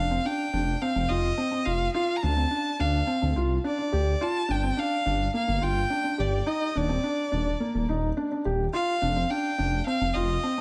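A straight 4/4 pulse at 106 BPM carries this moving, melancholic piano and strings electronica excerpt, where a rich, vibrato-laden solo violin sings the melody over a soft, felt-muted upright piano riff touched with delay and a deep, rumbling detuned saw bass with tube saturation, all three up front in a small room with light reverb as the chords move from Fsus2 through Dm7, G7(no3) and Ebmaj7(no3) back to Fsus2, in a tuning of A4 = 439 Hz.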